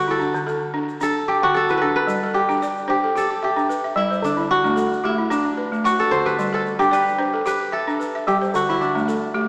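Heard through a small-speaker sound in a reverberant concert hall, this flowing West African traditional excerpt in G major at 112 BPM, with a gently swung sixteenth-note feel over alternating D and G chords, sets a ringing, fingerpicked kora melody up front over woody, buzzing balafon arpeggios played with rubber mallets, while a grainy egg shaker sits in the background from 0.2 to 9.2 seconds.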